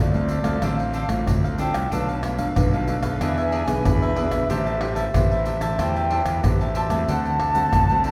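A sunny, playful samba-choro excerpt at 93 BPM opens with an airy, distant wooden baroque flute playing an expressive, tongued solo with vibrato over crisp picked cavaquinho, thumb-plucked classical nylon-string guitar and a dark, round fuzz-overdriven fingered electric bass, joined at 0.1 seconds by up-front tube shaker, pandeiro, tamborim and deep surdo, all bathed in a recital-hall reverb as the harmony moves through Dm7, Bm7b5, E7, Am7 and D7.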